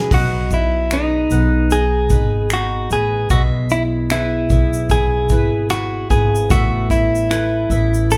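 Recorded as a band playing live in one room with a moderate large studio reverb, this carefree, easy-going acoustic pop excerpt has a gentle swing, and a clean, compressed, direct-recorded electric guitar carries the picked melody up front. Beneath it a full-bodied fingerpicked jumbo steel-string acoustic guitar with audible finger squeak, a woody pizzicato upright bass and a soft brush kit with punchy kick, finger snaps, shaker and crash cymbal move through B6, E/B and Asus2, while a picked bowl-back mandolin adds arpeggios in the background. At 6.5 s an intimate concert grand piano with audible action noise and long sustain joins in the background.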